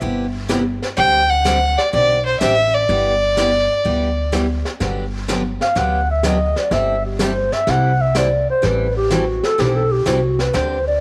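A bright, full-bodied picked acoustic guitar, a woody, thumpy pizzicato upright bass and a dark, smooth brushed drum kit with a high-tuned snare open this cheerful, playful western swing passage in G major, cut from a longer piece and moving at 126 BPM with a strong swing on the eighths. A warm, bowed fiddle carries the melody from 1.0 seconds with light vibrato and an even, smooth tone, sitting up front until 4.3 seconds. At 5.6 seconds a breathy, intimate clarinet takes a close-miked jazz solo, its whispered subtone, soft attacks and scooped notes floating over chords like Gmaj7, C6/G and Am9 in a light studio reverb.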